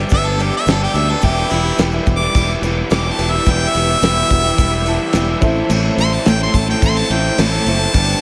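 A bright, punchy harmonica leads this short excerpt of folk rock and heartland rock with a solo carrying light vibrato, sitting up front from 0.1 seconds. Its mood is dusty and reflective, moving at 107 BPM in a straight 4/4 in A minor, with the chords passing from G to Em and settling on Am at 5.4 seconds. Beneath it, a picked steel-string acoustic guitar with audible finger squeak plays the accompaniment while a crunchy, double-tracked overdriven electric guitar plays a riff coloured by lush chorus. A fingered electric bass sits direct and forward, and a damped 70s drum kit with a fat snare, tight kick and dark cymbals keeps time alongside a grainy tube shaker tucked into the background. A very quiet grand piano accompanies throughout and adds a brief fill between 4.6 and 5.7 seconds. The whole mix is soaked in a huge ambient reverb, giving the recording a dreamy, spacious haze.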